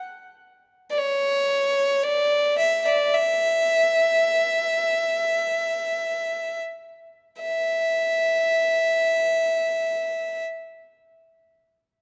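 A dark, warm recording with a moderate concert-hall reverb frames this longing, haunting Celtic folk piece in free time, cut from a longer work, in which a single rich fiddle, bowed smoothly and evenly with light vibrato and sitting close and up front, plays alone from 0.9 to 10.4 seconds, slowing down through the first 7.4 seconds before moving into a second section.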